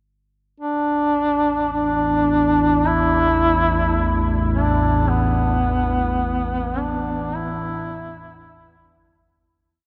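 Cavernous and dark, this dark ambient drone piece moves at a slow 53 BPM in 4/4 and lasts under ten seconds as a complete work. A clear duduk carries the melody from 0.6 seconds, playing a free, folk-style solo line with vibrato between B3 and E4, its vintage tone sitting up front and trailed by a diffuse ambient delay. At 1.6 seconds an analog drone enters low, between A1 and E2, an evolving sawtooth and pulse-wave sound with pulse-width modulation, its slow attack and long release softened further by chorus. The drone fades in from the start and begins fading out at 5.1 seconds, while the duduk stops at 9.0 seconds and the drone lingers until 9.7. A huge, wet reverb with an 8.6-second decay places the whole recording in a vast, echoing space, built on a single A5 chord.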